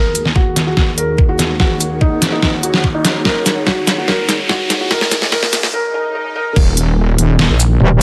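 A half-time 4/4 pulse at 145 BPM drives this heavy, chaotic wobble dubstep clip in Eb minor, cut from a longer piece and resting on a single Eb minor chord. A felt-muted upright piano carries the melody for the first 6.5 seconds, soft and intimate with audible action noise and a dub echo trailing its notes. Behind it sit a lush supersaw pad with phaser, sidechain pumping and a filter sweep, a cloudy, evolving granular pad with its own reverb, and a background riser and swell. The up-front, tape-warm dubstep kit brings a deep snare, crisp hats, shaker and crash through a long drum fill, joined by a knocking electronic kick from 0.4 seconds, before a brief break and swell give way to the drop at 6.6 seconds. There a saturated, detuned wobble bass with chorus and overdrive enters beneath the pads, and in the final fraction of a second a harder, metallic FM wobble bass cuts in. The mix is dry and high-passed, with some lossy compression artefacts.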